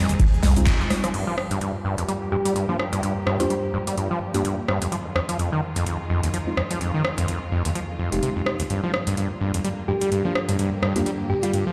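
A lush hall reverb and the boom of a big sound system in a bare room frame this hypnotic, gritty acid house excerpt, cut from a longer piece and moving at 127 BPM in 4/4 with a light 16th-note swing in G phrygian. It opens on a drop over Fm7, where a round sine sub bass and an overdriven electronic kick sound only briefly, with a band accent at 0.7 seconds, before the harmony settles into alternating Gm7 and Fm7. Up front, a squelchy, resonant sawtooth acid bass riff with filter sweeps and digital delay pumps with the sidechain. Alongside it, a booming analog drum machine adds metallic hats, congas, handclaps, rim clicks, shaker, and crash and ride cymbals, overdriven and re-recorded in a small room. In the background, a clear bowed string section holds sustained chords through a low-pass filter and a very quiet acoustic kit adds airy snare, hi-hat and shaker, while dark, nasal chord stabs with chorus and delay punctuate the groove. 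A tine-like FM pluck with a warbling chorus carries short melodic phrases, entering at 2.3 seconds and returning near the end.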